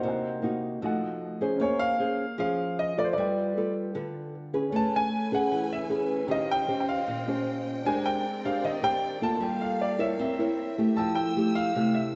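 A straight 4/4 bossa nova pulse at 154 BPM carries this sunny, sophisticated passage, cut from a longer piece. Up front, a smooth, vintage-toned grand piano sings the melody in a high register, beside a dark, thumb-plucked nylon-string guitar whose small, acoustic sound supplies the accompaniment. A natural-sounding baby grand sits in the background, adding further accompaniment higher up. At 4.7 seconds a lush symphonic string section enters with close, bowed sustained chords, soft in attack and expressive with vibrato. The harmony moves through rich extended chords, from Cm7b5 and F7b9 through Amaj9 and Abmaj9#11 to a closing Fmaj9, heard in the moderate reverb of a church or concert hall that mellows the top end.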